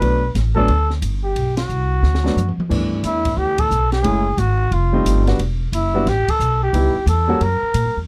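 A dry, close 1970s-style studio sound frames this brief, swinging small-group jazz cut in G major at 178 BPM, where a growling, raspy trumpet carries the melody up front alongside a woody pizzicato upright bass. A clear grand piano comps through rich chords such as Gmaj9, F#m9 and C#m7b5, while an acoustic drum kit with a high-tuned snare and boomy kick drives the swing. Band accents punctuate the line, and a drum fill from 2.0 to 2.7 seconds ushers in the second section before the piece breaks off on an F#7.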